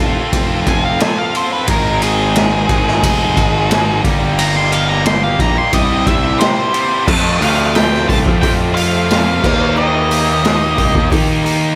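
A dark, fuzz-laden octave lead guitar takes a solo through the first 7.1 seconds of this confident, swaggering classic rock excerpt, carrying the melody above a bright, double-tracked distorted guitar riff and a round, punchy overdriven bass. A raw garage drum kit sits up front, gritty and saturated in a small room with a boomy kick, a medium-tuned snare, hi-hat, ride and crash, and a rolled-off top in a straight 4/4 feel. Underneath, a very quiet plugged-in twelve-string acoustic adds a shimmering, boxy, octave-doubled layer, all in light reverb and cut from a longer piece.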